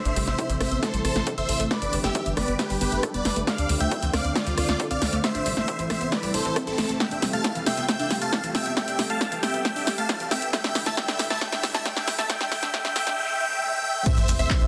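Bittersweet and emotional, this uplifting trance build-up in A minor runs at 136 BPM, with a huge, euphoric supersaw lead carrying the melody up front over a lush, warbling vintage pad, background arpeggios from a detuned unison pluck with tape echo, and a tight, driving sequencer bass, all pumping to the sidechain. A punchy, overdriven analog drum machine with crash cymbal, handclaps, hi-hat, rim click and snare sits up front, a layered electronic kick sits in the background, and a very quiet riser, noise sweep and sub drop rise through a drum fill and filter sweep, joined by a noise sweep from 12.3 seconds. At 14.1 seconds the impact lands on A minor as a bright, catchy plucky unison lead with vibrato and grainy, mellow maracas join briefly, all in a dense, heavily limited modern master with light reverb.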